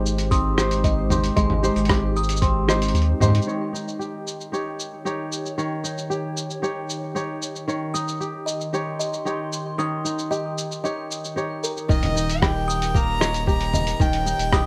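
A straight 4/4 groove from a muffled, overdriven lo-fi sampler-style kit of cabasa, hi-hat, rim click and toms carries this delicate folktronica excerpt, joined at the opening and again from 11.9 s by a thumpy, pitched-down electronic kick and a round, deep analog bass. Up front, a crisp, ringing kora plays low-pass filtered arpeggios with tape echo over a warbling, nostalgic pad holding sustained chords that move from Abmaj7 to Eb7, while a tinkling music box, also echoed, adds a second line, all in light reverb. At 11.9 s an intimate violin with light vibrato and an airy bow takes up the melody.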